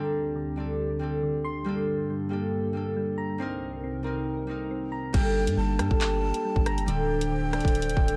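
Lightly reverberant digital ambience gives this dark, warm-toned drill excerpt a cold, tense air, played in a half-time feel. It opens on an up-front, ringing acoustic concert harp, with a deep, detuned analog pad swelling in behind on chorused sustained chords and soft, round electric-piano-like synth keys tracing mellow arpeggios through chorus and digital delay. The harmony moves through suspended, minor-ninth and minor-seventh colours. At 5.1 seconds the tape-warm drill drum kit arrives up front, its hard-clipped kick, warm hi-hats, handclaps, rim clicks and crash cymbal bringing a produced electronic punch. A long, sine-like 808-style bass enters at the same moment with a fast attack and a deep decaying tail, while a breathy, close-miked silver concert flute adds a tongued, straight-toned second line, slightly unsteady and trailed by digital delay.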